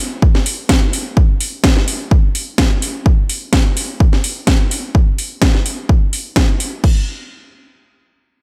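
A punchy, tape-warm electronic kick sits up front in this swaggering, bouncy house cut, entering at 0.2 s with a swung sixteenth-note feel. A layered house drum kit joins a moment later, with a cracking snare, metallic hi-hats and crash cymbal, all under a light reverb. Both drum parts stop at 6.9 s, just after the music moves into a new section.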